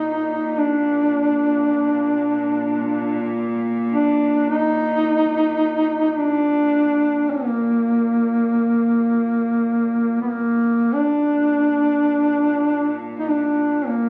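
Mournful and longing, this short Caucasian folk lament cut from a longer piece in free time features a dark, up-front solo duduk singing its melody with vibrato and scooped notes over a quieter bowed chamber cello section holding a drone with a reedy gut-string tone and light vibrato, all caught on a phone in the room with light reverb and compression, and a new section arriving at 10.9 seconds.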